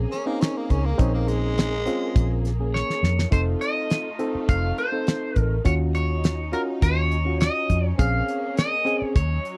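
A twangy electric guitar at the edge of break-up carries the melody through a lush chorus in this smoky, soulful straight-eighth soul blues in Bb minor at 103 BPM, moving from Bbm7 to F7, Ebm7 and back. A damped 70s drum kit with a fat snare and tight kick sits up front beside a round, foam-muted fingered bass, while a barky, overdriven reed electric piano comps through a combo amp and a bowed string section holds sustained chords in the background. A raspy tenor saxophone growls a second line with slapback echo until 2.4 seconds, a drum fill arrives at 2.7 seconds, and the whole cut from a longer piece has the dry, close sound of a 1970s studio.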